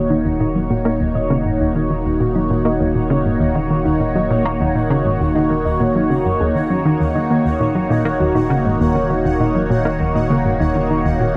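Bathed in a huge ambient reverb, this short cut from a longer ambient, sequencer-driven space music piece in Eb minor at 100 BPM feels cosmic and expansive, with an up-front swirling, phased analog pad holding an Ebm7 chord over a deep sine sub bass, while a bright, chorused analog pluck riff with tape echo, a tine-like FM thumb-piano-style synth pluck spinning arpeggios under a filter sweep in the background, and a faint pulsing gated texture fading in from 0.3 seconds fill out the space.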